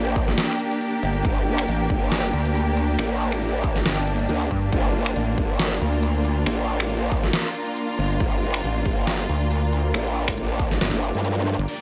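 Aggressive and chaotic, this heavy wobble dubstep drop in G minor pounds along at 138 BPM with a swung, half-time feel, cut from a longer piece and soaked in a huge, dreamy reverb. A growling, formant-filtered growl bass with overdrive and chorus sits up front from the start, joined at 1.0 seconds by a pulsing pluck wobble bass, while a punchy electronic kick and a dubstep drum kit of deep snare, crisp hi-hats, finger snaps and crash cymbal drive the groove, the kick dropping out at 11.2 seconds as the kit plays on. Beneath them, a lush bowed symphonic string section holds sustained chords through sidechain pumping and a low-pass filter, a cloudy, detuned granular pad drifts in the background, and a very quiet downlifter closes the final moment.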